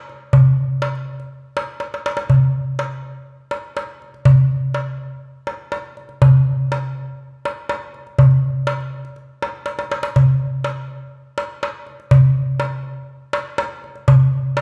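A crisp, high-pitched metal-shell darbuka sits close and dry at the front of this festive Arabic percussion passage in free time, carrying the whole excerpt from 0.1 s to its end. Drum fills stand out at 1.8 seconds and again at 9.7 seconds, giving the small acoustic drum a lively, celebratory lift. Around it, a large studio reverb lends a warm, live-in-the-room ambience to this short section of a longer piece.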